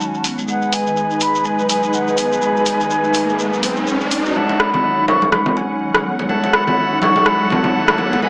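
Heard through a small-speaker haze with plate reverb, this hypnotic afro house excerpt at 124 BPM sets a hollow, distant flute melody with tape echo over veiled, muted strings carrying 12-bit sampler grit, woody soft-mallet marimba arpeggios under a filter sweep, a grainy shekere that stops at 4.3 seconds, a deep house kit of hi-hat and rim click in studio reverb, and a background riser, before a move from G#m7 to F#m7 at 4.4 seconds brings in bright, lightly overdriven tonewheel organ stabs, ringing hard-hand congas and a barely audible, dark detuned saw bass for the build-up.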